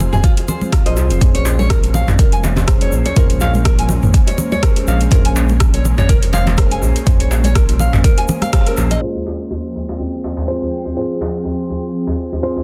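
An ethereal, detuned pad, a muted, felt-softened upright piano with delayed stabs, a smooth, gliding, wave-folded synth bass and close hard-hand congas open this earthy, spiritual afro house excerpt at 123 BPM in F minor. They are joined by fingerpicked nylon-string guitar arpeggios with finger squeak, a deep house kit with metallic hats, a rattling djembe, a grainy shaker and a deep, up-front kick. The pad, piano, bass and guitar pump with the sidechain over Fm and Bbm7 until a band accent at 8.5 s gives way at 9.0 s to the pad, piano and djembe alone as a filter sweep moves across the pad.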